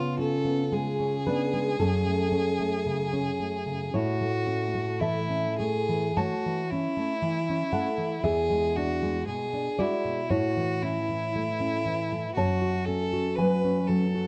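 Serene and warm, this romantic duo for violin and classical guitar unfolds in a gently flexible rubato over a 4/4 pulse, a short passage cut from a longer piece. A single bowed violin carries the melody up front and close, its rich, smooth tone shaped by vibrato and an even line, set in a plate reverb. Beside it, the nylon-string guitar supplies a dark, full-bodied accompaniment, thumb-plucked and spanning from deep bass notes to high treble, sitting slightly louder than the violin. The harmony moves from C#7 through F#m and A, then on to E7 before returning to A and settling on F#m near 12.3 seconds. Light reverb and a dusky production give the 14.3-second passage an intimate, unhurried glow.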